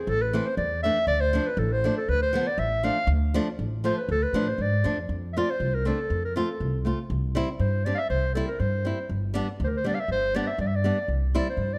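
A mellow, classical-style clarinet opens this festive yet bittersweet klezmer excerpt, carrying the solo melody up front at 120 BPM in a straight 2/4. A growly, woody pizzicato upright bass and a bright, fingerpicked flamenco guitar with fresh strings join almost at once. The tune moves from D dorian sharp 4 over Dm into F major at 5.1 s, passing through F, C and G, all set in a moderate recital-hall reverb.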